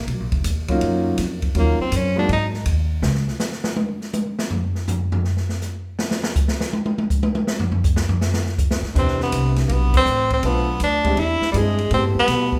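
A clear, up-front tenor saxophone with light vibrato leads this sophisticated, swinging small-group jazz piece at 162 BPM in Ab major. Woody, thumpy pizzicato upright bass, warm grand piano chords with long sustain, and an acoustic drum kit with dark cymbals and a boomy kick back it, until the drums take a solo at 3.0 seconds. At 9.0 seconds the full band returns in C major with a band accent at 9.9 seconds, all within a moderate recital-hall reverb in this short cut from a longer piece.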